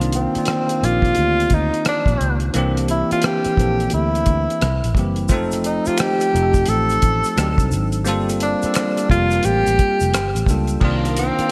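Sultry, soulful R&B and neo-soul at 87 BPM with a swung 16th feel, this excerpt from a longer piece sets a breathy, up-front tenor saxophone lead with scooped notes and light vibrato over a bell-like tine electric piano with analog chorus, a round, foam-muted fingered electric bass and a cloth-damped, thuddy drum kit with gated reverb, as a tube shaker and finger snaps slip in behind from 5.3 s and a swirling, phased string machine enters in the background at 10.8 s, all inside a lush hall and a bright 1980s-style digital production moving from Cm11 through F7 and Gm11 back to Cm11.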